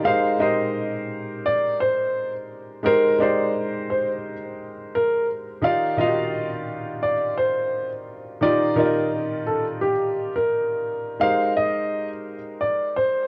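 An intimate, woody upright piano carries the melody in this mellow, cosy hip hop fragment, its smooth, long-sustaining tone sitting up front with the audible noise of its action. Beneath it, a felt-muted upright piano plays the accompaniment, soft and thin-sounding, dulled by a low-pass filter and the gentle wear of cassette tape. The lead piano is also softened by a low-pass filter, giving it a vintage character. At a relaxed 86 BPM in 4/4 with a light swing on the sixteenths, the harmony moves in Ab lydian from Abmaj9 to Ebmaj9 and returns to Abmaj9 as a new section begins at 11.2 seconds. A small room reverb and a cassette tape character on the overall recording keep the sound close and homely in this short excerpt cut from a longer piece.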